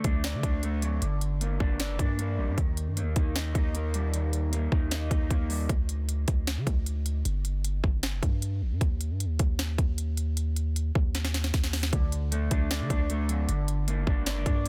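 A dark, menacing trap beat in G harmonic minor opens with everything at once: a slightly broken-up electric guitar, a deep 808-style bass and an electronic trap kit, moving at 154 BPM in a half-time feel. The guitar is fingered and shadowy, softened by a low-pass filter and bathed in lush chorus, voicing a D to Gm to Eb progression before it drops out at 5.7 seconds. The long, sine-like 808 hits with a fast attack and then decays, mellow yet up front, carrying the low end through the bare stretch that follows. The kit pairs a hard-clipped kick with a sharp snare and crisp hats, re-recorded in a small room, and a drum fill at 11.1 seconds leads into a new section where the guitar returns over D and Gm. The mix is dry, dense and heavily limited, and the recording is cut from a longer piece.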